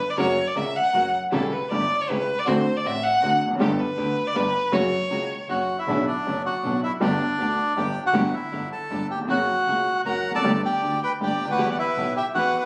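A dramatic, passionate tango in 3/4 with a rubato feel, this short excerpt cut from a longer piece opens with a solo violin, up front and rich-toned with vibrato and a focused, smooth top, carrying a second line until 5.5 seconds and returning at 10.1 seconds. A woody upright piano with short sustain provides the accompaniment throughout, while a bowed studio string section plays smooth, even stabs in the background. Beneath them a bowed double bass, clear, boxy and intense, with vibrato and an airy bow, holds down the low end. At 5.5 seconds the bandoneon enters with the melody, reedy and dark with an airy edge, sitting up front and coloured by plate reverb and tape echo. The whole recording sounds as if captured on a phone in a club, with wet room reverb, vinyl crackle and compression.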